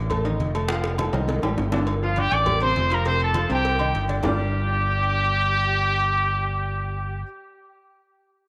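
A woody, slightly detuned upright piano with audible action noise and a round, up-front fingered electric bass open this passionate, driving salsa excerpt in G minor at 203 BPM, joined by tight, high-tuned cowbell and bongos in a large room, ringing agogo bells and timbales in the background, and very quiet, low-tuned congas with a thick skin. A drum fill runs from 0.7 to 1.9 seconds, and these percussion parts drop out at 4.3 seconds, while a punchy, vintage trumpet section with vibrato takes the melody from 2.0 seconds under moderate spring reverb.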